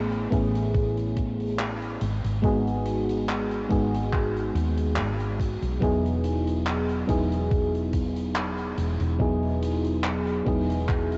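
A mellow FM electric piano, soft and up front with analog chorus and delay, accompanies this woozy, dreamy vaporwave excerpt at 71 BPM in E major, drifting from Amaj9 through G#m7 to Emaj7 over a round, punchy hollow-body bass, a thumpy sampler-style electronic kick and the handclaps and hi-hat of a huge arena kit roughened by 12-bit grit, all bathed in light studio reverb and worn, warbling cassette tape with dulled highs.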